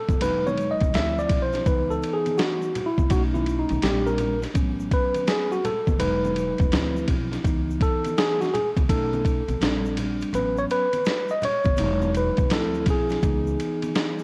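A tine electric piano leads this cool, smoky jazz-hop fragment, playing solo up front through its built-in speakers with a clean tone and a cassette-tape colour across the full 14.2 seconds. Set at 83 BPM in 4/4 with a swung sixteenth-note feel in C# minor, it cycles through lush extended chords, Emaj9, Dm9, C#m9, B7, A#69 and A69, twice before returning to the opening three. Beneath it, a sampler-style boom bap kit sits prominently, compressed, pitched down and gritty, with a thumpy kick, a medium-tuned snare, hi-hat and ride, all carrying the air of a large room; the kick drops out briefly around 10.3 seconds. A woody, dark upright bass with steel strings is plucked pizzicato low in the register. Bright, band-limited congas and a tube shaker with a vintage edge and hard hands sit in the background. Light reverb and small-room ambience lend the home cassette recording an intimate, lo-fi character, and the passage is cut from a longer piece.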